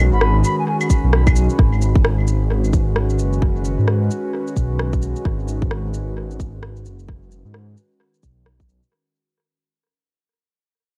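An echo-heavy cassette-tape mix with little reverb frames this ghostly, nocturnal future garage cut in G# minor at 131 BPM, swung on the 16ths. A warbling, lo-fi pad with chorus and its own reverb holds sustained chords over a menacing, saturated detuned saw bass up front, both pumping against the sidechain, while a pure, distant concert flute sounds only briefly at the opening through tape echo. Tape-echoed electronic rim clicks, shaker and claves tick beside a tight, up-front electronic kick that arrives at 0.9 seconds, and the passage fades out from 1.6 seconds on a G#m7 chord.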